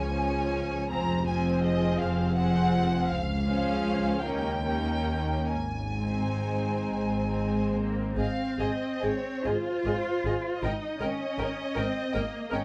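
A classical slow movement for string orchestra in 6/8 with free, rubato timing, tender and serene in mood, cut from a longer piece. Rich, focused bowed violins carry the melody over a second violin line, while smooth, even violas fill the accompaniment and a distant, expressive cello section joins a clear, close double bass section in the bass, all with vibrato. The strings sit in a large, moderately reverberant space with a dark production, and the harmony settles onto Ab at 5.5 seconds before the phrase turns at 8.2 seconds.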